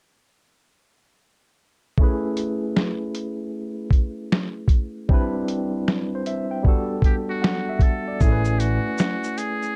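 Dark, warm production with light reverb frames this dreamy, nostalgic lo-fi hip hop clip, cut from a longer piece, at 77 BPM in A major with a swung 16th-note feel. From 2.0 s a barky, lightly overdriven tine electric piano, softened by cassette tape, a low-pass filter and plate reverb, moves through Amaj9, Cmaj9 and Gmaj9 over a compressed, pitched-down sampler kit of thumpy kick, muffled medium-tuned snare, hi-hat, shaker and finger snaps. A breathy, buzzy trumpet with a metal mute takes the melody at 7.1 s, and a woody pizzicato upright bass sounds briefly at 8.2 s as the chords return to Amaj9.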